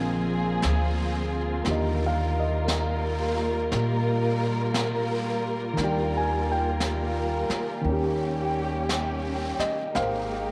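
Slow jazz at a swung 58 BPM in Eb major, tender and late-night, where a dark, mellow concert grand plays accompaniment and a lush, bowed string section with vibrato sitting up front holds sustained chords over a woody, thumpy pizzicato upright bass on gut strings, while a smooth brush kit with a high-tuned snare and hi-hat enters at 0.6 seconds, all bathed in a moderate plate reverb as the chords move from Bb9 through Ebmaj7 and Eb7 to Abmaj9 in this excerpt cut from a longer piece.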